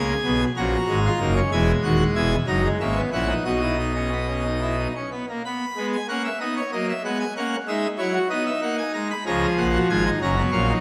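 Bathed in the wet reverb of a scoring stage, this short excerpt from a serious, driving baroque-style four-part fugue in B major sets a solo pipe organ up front on full organ, its mixtures brilliant and majestic with audible chiff in a baroque voicing, moving at 63 BPM in a straight 6/8 across a range from D#1 to B5 as the harmony turns through Emaj9 and F#7 before a second section begins at 5.4 seconds.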